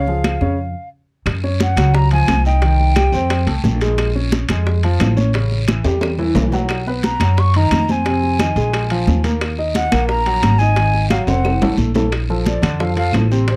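A dry, close studio sound in a 1970s vein frames this sunny, danceable Afro-Cuban jazz excerpt, with a growly, woody pizzicato upright bass up front beneath a present grand piano with long sustain. A breathy, mellow metal flute with a soft attack carries the melody, dropping out after 3.8 seconds and returning at 7.0 seconds before a brief solo at 12.1 seconds, while background congas with thick skins, tight high-tuned bongos, ringing timbales, distant claves and a raspy guiro make up the percussion. An early stop and two drum fills break up the groove.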